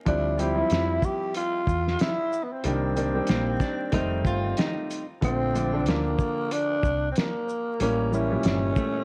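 A growling, breathy tenor saxophone carries the melody up front with tape echo, opening together with a vintage grand piano, a round, woody fretless bass with subtle chorus, and a muffled, cloth-damped drum kit with a fat snare, tight kick, hi-hat and shaker in this cool, smooth jazz-hop excerpt with a swung 16th-note feel. At 3.3 seconds a dark, clean semi-hollow electric guitar joins on a quieter second line, also touched with tape echo, as the harmony moves from Dm11 through Cm7, F7 and Bbmaj9 to A7b9. The whole cut sits in a moderate studio reverb and carries the worn character of old cassette tape, with vinyl crackle and warbly pitch drift.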